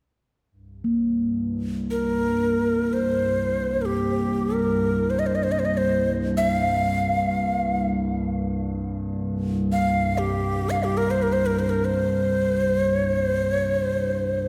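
Meditative and haunting, this free-time world meditation piece, cut from a longer work, opens at 0.8 seconds on a warbling, detuned tape-like pad droning low with chorus and built-in reverb, its dark, lo-fi tone sitting up front. Entering at the same moment, a pure, ringing quartz singing bowl with slow beating hangs softly in the background until 8.7 seconds, while from 1.9 seconds a breathy Native American-style cedar flute carries the melody up front, its woody chiff and vibrato trailed by analog delay. A plate reverb gives the whole mix a wet, echo-heavy space.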